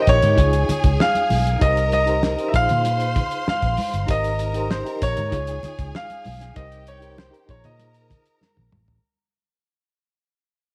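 Bittersweet and cinematic, this fading snippet of lush 1970s-style soul sets an intimate, up-front baby grand piano melody over a bowed violin section with vibrato and a reedy, slightly out-of-tune electric piano shimmering with fast tremolo. Underneath, a dark, foam-muted fingered electric bass and a cloth-damped, thuddy drum kit with a fat snare and tight kick hold the groove, while bright, close congas sit in the background. The chords cycle through Db, Cm7, Bb7sus4 and Abmaj9 in a light studio reverb, and a drum fill arrives at 8.4 seconds.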